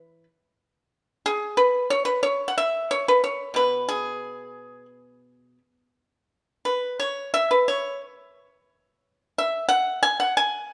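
A solo pipa, bright, percussive and up front under close, detailed microphones with light reverb, plays with fingerpicks in a free, rubato Chinese traditional style, spanning B2 to G#5 across this elegant, pastoral 10.7-second passage cut from a longer piece.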